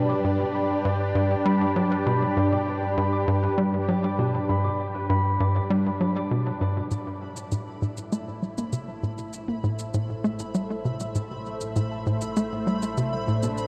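A punchy, up-front sawtooth sequencer bass drives a straight, hypnotic pulse through this cosmic stretch of ambient space music cut from a longer piece, beneath a thick, detuned unison pad with chorus and phaser, ringing thumb-plucked concert harp arpeggios with delay, and a very quiet, resonant analog drone. At 6.9 s the harmony moves from G to A minor as electronic shaker and toms enter with delay, a bright, pulsing gated texture fades in, and the harp fades in anew. Shimmer reverb on the pad, harp and texture sits inside a huge, wet ambient space, and worn cassette tape adds a warbling pitch drift.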